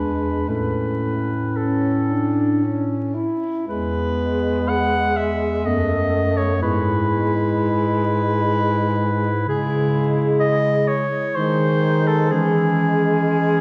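A warm soprano saxophone carries the melody up front in this lyrical, serene classical excerpt for single-reed quartet, its smooth top singing between G#4 and F#5 at a rubato 55-65 BPM in 3/4. Beneath it, a bright clarinet traces a second line in a lower register, while a mellow tenor saxophone with vibrato supplies accompaniment from a distant, roomy position. A mellow bass clarinet anchors the harmony, sounding both roomy and close at once. All four reeds play together throughout the 13.6 seconds, opening in A major before moving to E major at 3.7 seconds, where the harmony wanders through B7 and E toward C# minor near 9.5 seconds. A long church reverb bathes the ensemble, and faint vinyl crackle adds an aged patina to this fragment of a longer piece.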